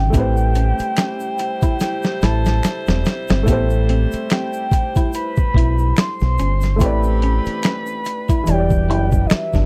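Sultry and introspective, this neo-soul R&B excerpt with a gentle 16th-note swing sets a soft, octave-layered synth lead with chorus and phaser over a baby grand piano, a deep, round dub bass with transformer saturation, and a gritty, pitched-down boom bap drum kit with a thumpy kick and finger snaps sitting up front. A clean semi-hollow guitar with spring reverb plays a second line in the background, while a clear jazz-style saxophone section adds stabs and an egg shaker with handclaps ticks quietly behind. A drum fill arrives at 1.8 seconds, the harmony moves from Am9 to Em9 at 8.5 seconds, and the sound is dry and close, like a 1970s studio.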